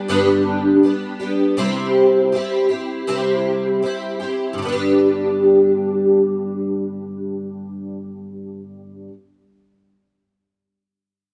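A bright, picked twelve-string acoustic guitar opens this short pop excerpt, setting a sunny, carefree mood at an unhurried 80 BPM in 4/4 with a straight feel in G major. Sitting up front in the mix, the guitar has a shimmering, octave-doubled tone from fresh strings, thickened further by an ensemble chorus effect, with finger squeak adding a touch of life. It plays an accompanying role across a range from G2 to G4, moving from G to C at 1.6 seconds before returning to G as a new section begins at 4.6 seconds. Light reverb and a small-room ambience lend the recording an airy, intimate sense of space, and the guitar carries on until the clip is cut off at 9.2 seconds.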